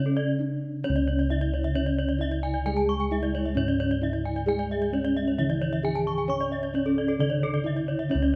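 Shimmering and brilliant, this short cut from a longer Balinese gamelan piece moves at 132 BPM in a straight 4/4, pitched in C# pelog. A mellow, soft bronze metallophone struck with padded disc mallets carries the melody in a boxy small room, while a lower padded metallophone sits in the background as accompaniment, and round, beating bossed gongs hold the bass up front. Above them, two ringing metallophones played with horn mallets spin arpeggios, the brighter one marked by a slapback echo, all in paired tuning that gives shimmering beats, with a brief break from 0.2 to 0.8 seconds, light reverb and close, detailed miking.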